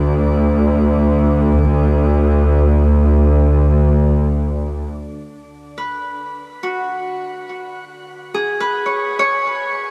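This peaceful, serene ambient piece in D lydian, cut from a longer work, moves at a slow 70 BPM in 4/4. An intense, bowed double bass section holds a low D up front with light vibrato, while a tense, string-like sawtooth drone fades out in the background, colored by phaser and its own reverb. After the bass stops at 4.9 seconds and a rootless Dmaj7 takes over, a fingerpicked Celtic harp enters at 5.8 seconds with ringing, delay-touched arpeggios, all set in light studio reverb.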